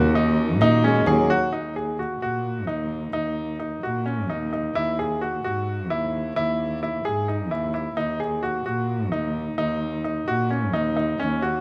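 Contemporary instrumental chamber music in 7/8, this pensive, urgent passage, cut from a longer piece, moves at 261 BPM counted in eighths with a straight feel in Eb phrygian. A bright grand piano sits up front throughout, its brilliant, intimate arpeggios carrying long sustain and audible action noise, while a bowed cello, smooth and even with vibrato, holds the bass line close beside it. In the opening 1.5 seconds a warm, punchy French horn plays a second line in the background, over very quiet, mellow sustained chords from a woodwind section in classical style. A frame drum played with soft hands adds a brief, dry touch of percussion between 0.6 and 1.3 seconds. After the horn and woodwinds stop, piano and cello continue as a duo, the harmony shifting from Ebm to Emaj9/D# and back to Ebm, all set in a moderate recital hall reverb.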